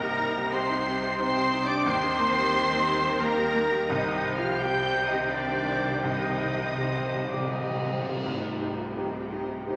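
Opening at once on the full orchestra, this moving, bittersweet cinematic score fragment in C minor drifts in a rubato 3/4 around 80-90 BPM, with a rich, focused violin section singing the high melody over a second violin section, an airy silver flute, a mellow clarinet and a light-vibrato cor anglais, while a tight French horn section holds sustained chords, an intimate felt-muted upright piano, a smooth viola section and a ringing harp fill the middle, and a clear cello section and a distant double bass section anchor the low end; round soft-mallet timpani sound at the start and return with a fill at 3.9 s as dark cymbal swells and tam-tam enter, the whole ensemble bathed in a wet scoring-stage reverb before a band accent at 8.2 s.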